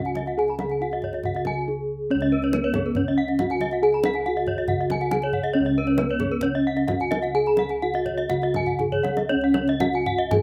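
Brilliant and shimmering, this Balinese gamelan excerpt in Db slendro moves at 118-139 BPM in a straight 4/4, cut from a longer piece and heard dry and outdoors. A mellow, padded-mallet bronze metallophone carries the melody with a vintage, band-limited ring, while two bright horn-mallet metallophones spin arpeggios above it with slapback echo, one close-miked and full, the other airy, their paired tuning producing shimmering beats. Soft, round bossed gongs anchor the bass and a deep kendang drives the rhythm, playing a fill from 8.7 to 9.3 seconds that leads into a new section.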